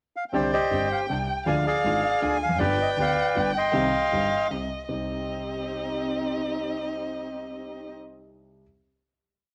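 Heard through the soft haze of a home cassette recording in a small, reverberant room, this complete short tango in waltz time moves with a rubato, tense and dramatic feel. A reedy, bright bandoneon sits up front and carries the melody in motif-based phrases, falling silent at 4.5 seconds. Alongside it, a single close violin plays an expressive bowed counter-melody with vibrato, soft attacks and portamento. A warm concert grand piano gives the accompaniment, with deep bass and short sustain, marking the waltz pulse with an accent on one. A dark, woody studio string section adds lush bowed stabs with vibrato and a smooth top, also leaning on the first beat. The harmony settles on a final minor chord from 4.9 seconds, and the piano is the last part to ring out, at 8.6 seconds.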